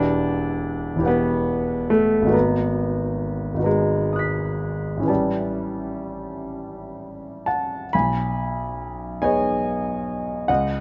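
The music moves in 6/8 with a free, rubato pulse, unhurried and breathing at its own pace. This is a serene, hazy piece of impressionist classical writing for solo grand piano, heard as a short cut from a longer work. The piano sounds clear, polished and intimate, sitting up front with the mechanical noise of its action audible beneath the notes. Its range stretches from a deep E1 up to a bright B6, as colored ninth chords drift from Em9 through G#m9 and A9 before settling on B69 at 7.9 seconds, where the opening idea returns. Close, detailed microphones and a light touch of reverb keep the sound present and near while leaving a faint halo around the harmonies.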